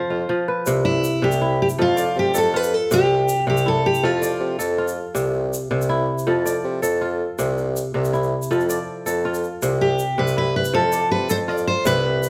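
A picked steel-string acoustic guitar melody with fresh strings and a crisp, ringing kora arpeggio open this flowing West African traditional string and xylophone music in C major at 107 BPM in 12/8; a bassoon with light vibrato soon adds a warm bass line and a grainy egg shaker enters at 0.7 seconds, while the guitar drops out at 4.6 seconds and returns at 9.8 seconds, over a steady alternation of C and F chords in a moderate recital hall reverb, cut from a longer piece.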